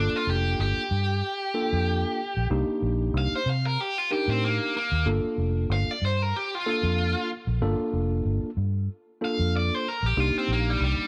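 An overdriven electric guitar takes the lead, its bright, picked tone sitting up front as it solos through the entire passage from 0.0 to 11.1 seconds, ranging from G3 up to F5. This is a brooding, soulful slice of straight-eighth soul blues in G minor, moving at 94 BPM in 4/4 with a light swing on the sixteenths. Beneath the solo, a vintage fingered electric bass gives a dark, round, punchy foundation, its foam-muted, amped sound also placed up front and reaching down to F1. A clean tine electric piano, heard through its built-in speakers, fills in the accompaniment in a narrow middle register. The harmony rests on Gm7 and Cm7, shifting to Cm7 at 2.5 seconds and back to Gm7 at 5.1 seconds, all set in a light reverb in this short portion cut from a longer piece.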